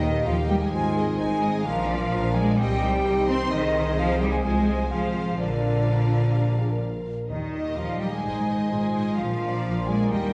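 Full orchestra and hard-mallet timpani open this heroic, adventurous cinematic passage together at 128 BPM in a straight 4/4, with the timpani dropping out at 2.3 seconds and returning briefly at 10.1 seconds. Up front, rich cello and double bass sections anchor the low end, while a distant, intense violin section carries the lush, vibrato-laden melody. A second violin section with a smooth top plays a second line alongside an airy, close-miked concert flute, and a mellow solo clarinet joins that line at 0.7 seconds. In the background, an expressive viola section supplies accompaniment, a mellow French horn section and a tight, very quiet trombone section hold sustained chords, and a dark, soft-edged trumpet adds stabs. The harmony moves through bright major chords such as Eb, Ab and Bb with a turn to C minor and F minor, all set in a generous scoring-stage reverb that places the ensemble further back in the room.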